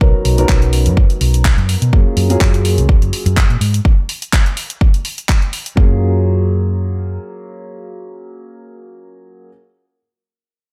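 A punchy, up-front electronic kick at 125 BPM with a swung 16th-note feel drives this sunny, feel-good filtered disco house passage in F# major, joined by tape-warm handclaps and hi-hats re-recorded in a large room, with pumping hats, through a drop that ends at 5.8 s; a round, hollow-body fingered electric bass pumps up front until 7.2 s, while a mellow, boxy grand piano with phaser and sidechain pumping moves from Bmaj9 to F#maj9 and carries on alone to 9.5 s, all in a dry mix with little reverb.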